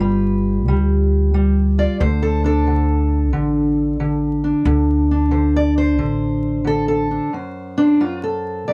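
A fingerpicked steel-string acoustic guitar, with a boxy, dark parlour tone, and a woody, thumpy pizzicato upright bass on gut strings open this rollicking, soulful acoustic country blues. Both sit up front at a swung 90 BPM in 4/4, moving from G7 to D5 under light reverb and vinyl crackle. The guitar then carries on alone over an F#dim chord from 7.3 seconds until this short cut from a longer piece ends at 8.7 seconds.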